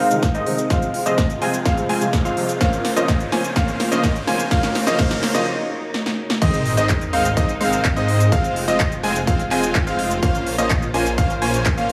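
A punchy, detuned supersaw stab drives this anthemic festival progressive house excerpt at 126 BPM in Bb minor, its riff sitting up front under sidechain pumping, a low-pass filter sweep and tape echo through a build-up that breaks into the drop at 6.4 seconds. A bright, brilliant baby grand piano plays arpeggios in a high register, its filter sweeping alongside the synth, while a soft, felt-muted upright piano adds dark accompaniment with audible action noise until 5.4 seconds. In the background, a lush bowed string section holds smooth sustained chords with vibrato, and a riser and sub drop enter from 1.3 seconds. A punchy electronic kick, tape-warm and re-recorded in a large room, sits up front beside the big-room drum kit of crisp hats, snare, handclaps, shaker and crash, with drum fills, a brief break and an impact as the drop lands. Underneath, a thick, menacing detuned saw bass beats quietly as the chords cycle through Ab, Fm, Bbmadd9 and Ebm7, all set in a moderate digital room reverb.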